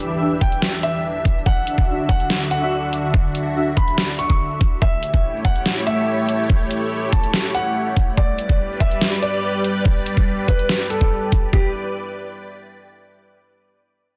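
A half-time 4/4 groove drives this aggressive, heavy wobble dubstep fragment, with a knocking, tape-warm electronic kick and an overdriven kit of hi-hat and deep snare sitting up front beneath a thick, detuned sawtooth unison pad pumping with sidechain, chorus and phaser, while dark, gritty brass stabs with tape echo sound only until 3.7 s and an intimate grand piano, its action noise audible, carries the melody through tape echo over chords moving from Em7 to Dadd9, A7 and G in a dense, heavily limited mix.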